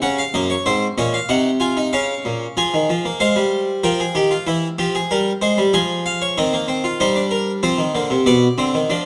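Up front and brilliant under close, detailed microphones in a moderate recital hall reverb, a full, plucked Italian-style harpsichord with three sets of strings plays a driving, serious baroque-style three-part fugue in 3/4, cut from a longer piece, ranging from Gb2 to Ab5 as its harmony shifts into a new section at 2.6 seconds.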